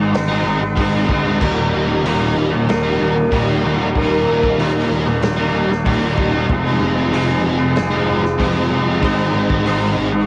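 Recorded at home on cassette, with light reverb and the ambience of a small room, this short cut from a longer shoegaze and dream pop rock piece moves at 95 BPM in Eb major with a blissful, wistful mood. A biting overdriven guitar riff sits up front with ensemble chorus, beside a twangy, bright, compressed electric guitar washed in reverse reverb, while a growly, punchy fuzz bass and a loose indie drum kit with a tight kick and rolled-off top carry the low end. From 1.4 seconds a boxy, shimmering twelve-string acoustic guitar adds octave-doubled arpeggios in the background, with finger squeak and analog delay, as the chords move from Ab through Eb and Fm7 back to Ab.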